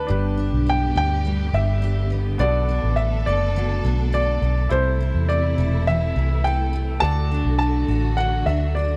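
A woody upright piano carries the melody up front, its lines touched by a slapback echo. Beneath it, a round, foam-muted vintage electric bass sits close and prominent, played with the fingers for a dark, amped low end. A double-tracked, picked steel-string jumbo acoustic guitar adds full-bodied accompaniment, while a clear, polished baby grand piano fills in softly from the background. From 0.1 seconds, a lush studio string section holds sustained, bowed chords with expressive vibrato and a smooth top. Cut from a longer acoustic pop piece, this heartfelt, easy-going passage moves through G, Bm7, Am and D in a straight 4/4 feel, set in a small room ambience.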